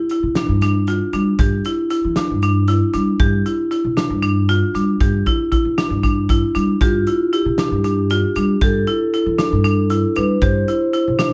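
Intricate and driving, this progressive instrumental snippet moves in a straight 7/8, with a bright, up-front marimba played with hard mallets spinning percussive arpeggios over a loose indie drum kit, whose punchy kick, medium-tuned snare and hi-hat sit in a pumping studio room. A woody, growly pizzicato upright bass holds the low end close to the listener, and at 6.8 s a mellow vibraphone with soft mallets adds a ringing, metallic second line. The band is heard from further back in the room through moderate reverb, with a rounded, dark top end.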